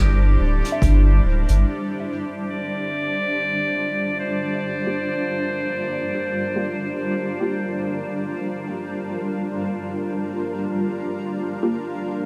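An echo-heavy, hazy mix with light reverb and small room ambience frames this deep ambient dub fragment in free time and G dorian, moving from Cadd9 to Gm7 at 1.7 seconds. A cloudy, granular pad sustains up front with its own reverb and a filter sweep, while a bright, vintage clarinet carries the melody through dub echo, and a soft FM synth bell plays arpeggios in the background with chorus and phaser. A round sub bass, a distant brushed hi-hat and a very quiet, overdriven electronic kick appear only briefly at the start, and a muted, detuned sawtooth chord stab with 12-bit sampler grit enters at 4.9 seconds.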